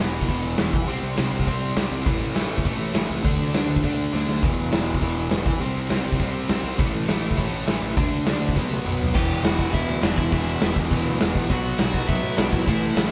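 A big acoustic rock kit sits up front in this raw, angry punk rock excerpt, its punchy kick, medium-tuned snare, toms, hi-hat and bright crash cymbals driving a straight 4/4 at 203 BPM in E minor, with drum fills at 4.1 seconds and again just before the change at 9.1 seconds. Two overdriven, picked electric guitars carry the riff from the start: a cranked stack guitar with a glaring edge and a sludgy distorted guitar sitting warmer in the background. Beneath them, a fuzz picked electric bass adds a growly, overdriven low end, also kept back in the mix. The opening section moves through E5, C5, Am and D5 power-chord shapes, and at 9.1 seconds the music shifts to a passage over Em and Bm. There a dark, smooth overdriven lead guitar enters with a melody in the background, and a very quiet, double-tracked thick fuzz guitar joins the riff. The band sounds as if it is playing live together in a stone room with moderate reverb, and the recording is cut from a longer piece.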